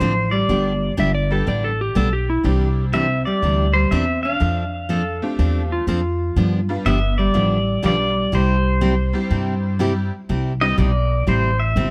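Swung eighths at 122 BPM in 4/4 carry this cheerful, down-home western swing excerpt in C major, where an up-front, twangy, compressed pedal steel with fingerpicked slide and volume swells sings the melody before taking a solo at 10.3 seconds, a dark hollow-body jazz guitar adds a second line, a clean lap steel joins with its own slide line from 1.0 to 6.8 seconds, a full-bodied dreadnought acoustic with finger squeak and a jangly, metallic tack piano fill out the accompaniment, and a woody, thumpy gut-string upright bass anchors the bottom, all set in light reverb.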